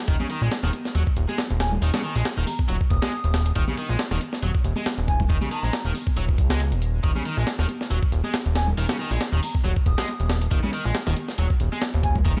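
Set in a digital ambience, this gritty, raw breakbeat excerpt runs at 138 BPM in Eb minor pentatonic with a 16th-note swing. It is driven by an up-front, compressed, tape-toned sampler-style kit with a thumpy kick, medium-tuned snare and hi-hat, and by a fat, detuned analog bass of sawtooth and square waves with a filter pluck and fast attack. A bright, double-tracked, picked overdriven electric guitar riff carries tube saturation, while distant, high-tuned congas with a thin skin sit in the background of a large room. An airy, wooden baroque flute, tongued and expressive with vibrato, floats in the background through a small speaker sound from 1.6 s to 5.9 s and returns at 8.6 s, sharing the vintage 12-bit sampler grit and dub echo with the guitar.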